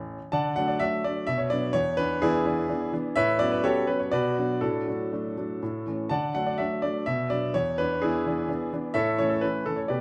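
Elegant and cheerful, this short cut from a longer classical-period piano sonatina moves in D major at 126 BPM in 3/4, shaped with a rubato feel. A clear concert grand piano plays solo from 0.0 to 10.0 seconds, spanning A1 to A5, its tone intimate and natural with deep bass and audible action noise, placed up front. The harmony cycles through D, B minor, E7 and A13 before settling back toward A and returning to D at 6.1 seconds, then closes the phrase on A at 9.0 seconds. A moderate recital hall reverb with a 1.5-second decay surrounds the instrument, giving it a sense of space while keeping the detail close. Tuning sits slightly high at A4 = 441 Hz.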